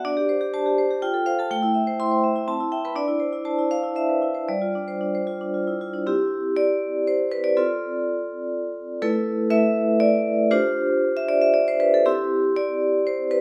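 A solo vibraphone opens this short cut from a longer contemporary classical piece, struck with medium hard mallets on a D7sus4 chord. The mood is warm and playful, moving in a flexible, rubato 3/4 at roughly 112-126 BPM in C major, and the instrument spans G3 to C6. Its tone is bright, metallic and ringing, with an airy shimmer from a slow motor vibrato. The opening section drifts through colorful chords such as Fadd9, Am7, Cmaj7 and G7sus4 before a second section begins at 6.1 seconds, settling on C and passing through Dm7/C, Asus2 and Dm7. The vibraphone sits up front in a light reverb, and the passage closes back on C at 12.1 seconds.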